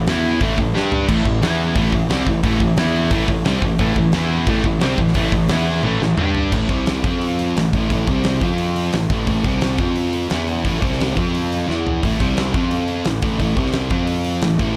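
A big, up-front rock drum kit with a punchy kick, fat snare and bright cymbals drives this relentless, aggressive heavy metal excerpt in A minor at 175 BPM, where two sludgy overdriven guitars, one dark and one warm, churn picked riffs in the background beneath a bright, double-tracked high-gain guitar that drops out at 6.5 seconds, while a growly fuzz bass adds punch and quick drum fills mark the shift from power chords on E, A and G to a C, F and A pattern under a light reverb.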